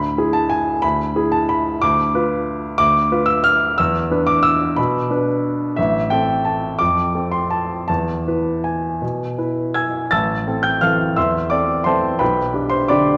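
A clear, polished baby grand piano sits up front in a wet concert hall, its 1.9-second reverb tail lending the dark, warm production a sense of space. This is a classical piano waltz in A minor, cut from a longer piece, moving in 3/4 with a rubato feel that lets the tempo drift between 154 and 196 BPM. The solo piano plays throughout the 13.2 seconds, ranging from A1 up to A6, and its present tone keeps every note distinct within the hall's bloom. The opening section leans on tense harmonies, moving from E7 over D and B diminished over D toward an open E fifth before settling into A minor, F and E. At 10.1 seconds a new section begins on A minor and turns to G over B, leaving a wistful, nostalgic mood hanging in the air.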